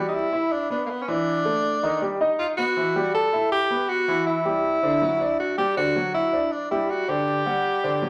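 A large studio reverb gives this recording a spacious, wet sheen, and a vinyl crackle runs beneath it. The short jazz excerpt, cut from a longer piece, has a sunny, danceable mood in straight 4/4. A clear tenor saxophone sits up front and carries the melody throughout, playing solo in a jazz style with a light vibrato. Beside it, a concert grand piano provides the accompaniment from start to finish, with a natural tone, a deep bass and a long sustain. The harmony moves from Em7 through Asus4, Baug and Emadd9 to Dsus24 and Dadd9, and it settles on Gmaj7(no3) at 5.8 seconds.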